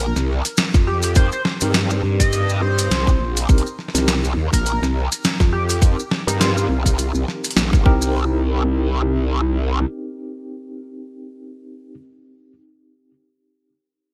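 A playful, swaggering glitch hop excerpt opens on its drop with a growling, wobbling bass up front, gritty pitched-down sampler-style hi-hat and snare with gated reverb, and an edgy, tearing sync lead melody carrying chorus, vibrato and digital delay until 6.6 seconds. Grainy maracas, a tight, layered electronic kick and a worn, slightly out-of-tune tine electric piano join over the Cm7 with swung sixteenths, the piano's mellow stabs shimmering with tremolo, sidechain pumping and delay from 1.2 seconds. The drums fall away as a brief second section arrives, leaving the saturated bass and piano under light reverb in a bright 1980s-style digital sound.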